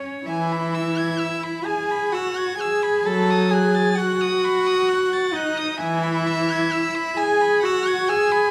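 In a lilting three-beat metre, pulled and stretched with rubato, this slow romantic movement for string quartet unfolds in a lyrical, warm mood, a fragment cut from a longer piece. The first violin carries the melody with a rich, pure tone that seems to float from a distance, its soft attacks and sul tasto bowing lending it a veiled quality. Above it, the second violin traces a higher line with light vibrato and an airy bow, sounding intimate and close. The viola supplies a low, narrow accompaniment, up front and gently vibrating, before dropping out at 6.6 seconds, while the cello, the most prominent voice, sustains the bass with soft, close bowing. The harmony moves from the home chord to a rootless dominant seventh at 3.1 seconds and settles back home at 5.8 seconds, all of it bathed in the lush, lingering reverb of a recital hall.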